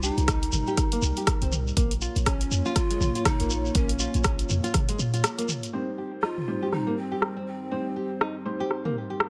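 This excerpt of driving, earthy afro house at 121 BPM opens with breathy cane pan pipes carrying a soft-attacked melody with vibrato, chiff and delay over a moody, detuned analog pad whose wave-folded chords pump against the sidechain. Alongside them, a full-bodied nylon-string guitar plays fingerpicked arpeggios through a low-pass filter and delay, while a boomy 808-style bass with a fast attack and a noise layer anchors the low end alongside a grainy, close and dry shekere. A layered deep house kit with dark, filtered hats, rim clicks, toms and crashes sits up front, joined by a deep electronic kick, all riding a swung sixteenth-note feel in C phrygian as the harmony moves from Cm to Bbm. After a short break at 5.2 seconds, a felt-muted upright piano enters at 5.7 seconds with mellow, boxy stabs full of audible action noise as the chords return to Cm and a filter sweep runs across the drum kit. 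Light reverb gives the whole a gentle sense of space.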